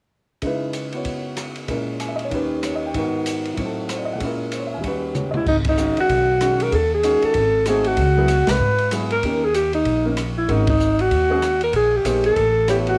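A breathy, mellow alto saxophone with vibrato and subtone takes the melody at 5.4 seconds in this moody, swinging small-group jazz excerpt in G# minor at 191 BPM, sounding distant and roomy yet up front. A drum fill at 5.2 seconds leads into the second section, where a woody pizzicato upright bass joins at 5.5 seconds and the band hits a few accents together. Through it all, an intimate concert grand piano with deep bass and audible action noise comps through rich altered and extended chords over an airy kit with dark cymbals and a boomy kick, all in a small room with light reverb on a home cassette recording.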